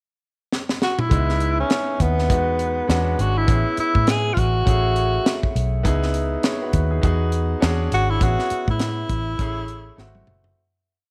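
Lush 1970s-style soul in C# minor at 102 BPM, this short, complete piece feels silky and bittersweet, with a 4/4 groove swung at 58% on the sixteenths. A tight funk drum kit opens with a fill at 0.5 seconds, its high-tuned snare and tight kick sitting up front in a natural small-room sound that settles into a smooth mid-tempo soul pulse. A breathy tenor saxophone carries the melody from 0.8 seconds, using soft-attack subtone, vibrato and scooped notes to shape motif-based call phrases in a jazz style. Entering at 1.1 seconds, a bright concert grand piano holds down rootless chords in half notes with a brilliant, long-sustaining tone and short fills. Beside it, a vintage muted fingered electric bass plays a round, punchy, amped line with muted ghost notes. Under light reverb, the harmony moves through C#m9, Emaj9, E13 and Amaj7 twice before a closing G#7b9b13 and a last drum fill, as the whole piece fades out.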